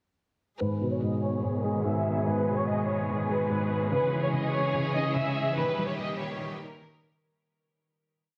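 A dark, ominous drill-flavoured hip hop piece at 145 BPM with a half-time feel, set in G# harmonic minor and slightly sharp of standard pitch. The whole thing plays as a brief breakdown from 0.6 to 7.2 seconds, moving from G#m through C#m to D# under a filter sweep, with a fade-out beginning at 5.6 seconds. A bowed violin section carries a looping melody with smooth vibrato, repeated like a sampled loop and trailed by a diffuse ambient delay. Beneath it, a felt-muted upright piano plays a pedal-note arpeggio in eighths, its thick felt giving a mellow, intimate tone with audible action noise. A symphonic string section holds lush, soft-attack chords as a sustained pad. All three parts sit up front but are low-pass filtered, and the dreamy mix is soaked in a huge ambient reverb.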